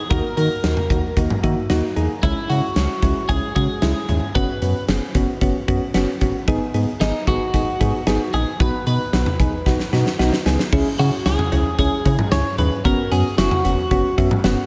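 Nocturnal and melancholic, this synth-pop excerpt moves at 113 BPM in C# dorian, with a clean, picked twelve-string electric guitar carrying the melody through lush chorus, shimmer reverb and delay. Soft, mellow, detuned electric-piano-like synth keys with chorus and a filter sweep add a short fill at 1.2 seconds, while a round, deep analog bass sits underneath. A huge arena drum kit sits up front with a punchy kick, fat snare, bright cymbals, toms and cowbell in a pumping hall-like room, and it plays a fill at 9.7 seconds before the guitar drops out at 14.1 seconds.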